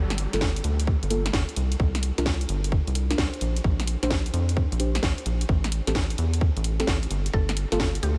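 Lightly reverberant and moody, this short cut from a longer UK garage track bounces along in a two-step groove at 130 BPM in 4/4, with a 66% swing on the sixteenths in G dorian. Up front, a rubbery, nasal square-wave bass with a fast, plucked filter attack carries the low end from G1 to F2. A tight, layered electronic kick sits alongside a garage kit of cracking snare and bright hi-hats, both touched with studio reverb. In the background, a deep, dark chord stab with chorus and tape echo moves under a filter sweep through Gm9, C9sus4, Bb69 and A7(no3) before returning to Gm9 at 7.3 seconds. At that same moment a woody, mallet-like FM pluck enters with a short, percussive decay, its chorus, cassette-tape colour and tape echo adding a final glint between G4 and A4 until the cut ends at 8.2 seconds.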